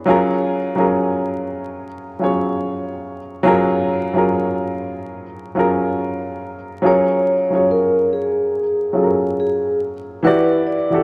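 Swung sixteenths in 4/4 give this mellow, nostalgic hip hop fragment its laid-back lean. A woody upright piano with short sustain sits up front from the start, softened by cassette tape and a low-pass filter as it holds an F#maj9 before shifting to Em7 at 10.2 seconds. At 6.9 seconds a soft-mallet vibraphone enters with a ringing, metallic melody and slow motor vibrato, all set in a dark production with moderate plate reverb and vinyl crackle.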